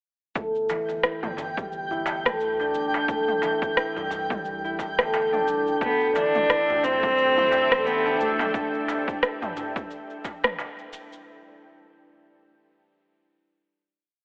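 A rich, reedy cello with light vibrato sings arching phrases from 5.8 s in this meditative organic downtempo piece, over an up-front, thumb-plucked concert harp whose ringing step-sequenced arpeggios pass through a filter sweep and tape echo, a round analog bass pumping in the background, an overdriven deep house kit of rim, shaker and low tom beside a punchy electronic kick and a crisp, deep darbuka, and a twinkling granular texture and cloudy, evolving granular pad, set in a lush hall reverb with a telephone-like tone.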